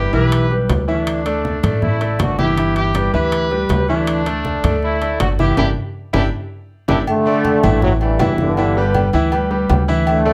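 Light reverb surrounds this joyful, danceable salsa fragment, with the horns, piano and bass up front. A clear, vintage horn section carries the opening melody in a tight pop style, while a bright concert grand piano supplies brilliant, polished accompaniment with a deep bass register. A woody, dark upright bass plucked on steel strings anchors the groove. Low-tuned congas with a thick skin sit softly in the background, and ringing timbales and agogo bells sound close and dry. The full band hits an accent from 5.6 seconds, capped by a drum fill at 6.5 seconds. At 7.1 seconds a present trombone section takes over the melody with vibrato, singing as a low ensemble over the continuing groove.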